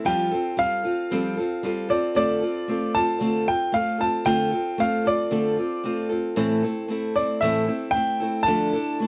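A straight 4/4 pulse at 114 BPM carries this wistful, reflective rock fragment in D minor, cut from a longer piece, with the harmony moving from Fadd9 through Dm7 and Am to Dmadd9. A boxy, picked, ladder-braced acoustic guitar plays the accompaniment up front throughout, while a bright baby grand piano carries the melody between D5 and A5 with a brilliant, intimate tone, short sustain and audible action noise. The sound is dry and close, like a 1970s studio recording with little reverb.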